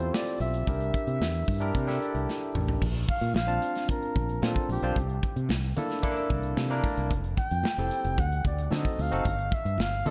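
Polished 1980s jazz-funk pop at 112 BPM in 4/4, urban and breezy, with a warm flugelhorn carrying the melody in a jazz style, its soft attack, light vibrato and scooped notes trailed by analog delay. A barky, clean tine electric piano played through a combo amp with subtle chorus accompanies over changes from Dm7 and C7 into Bbmaj9, C13 and Fmaj9. A direct, up-front fretless bass and an airy studio kit with a punchy kick and medium-tuned snare carry the beat, a drum fill at 2.3 seconds leads into the next section, and damped, high-tuned congas played with soft hands join very quietly at 3.1 seconds, all within light reverb and small-room ambience.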